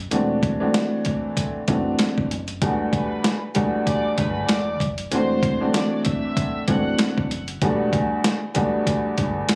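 Moody and dark, this boom-bap hip-hop excerpt swings over a gritty, pitched-down sampler drum kit with a thumpy kick and high-tuned snare, a round, deep fingered electric bass, and a woody, slightly detuned upright piano colored by cassette tape as it moves between D7/E and Em11, while a reedy, gut-string violin section with light vibrato and tape echo carries the melody from 2.9 to 7.1 seconds, all heard in a small room as if caught on a phone.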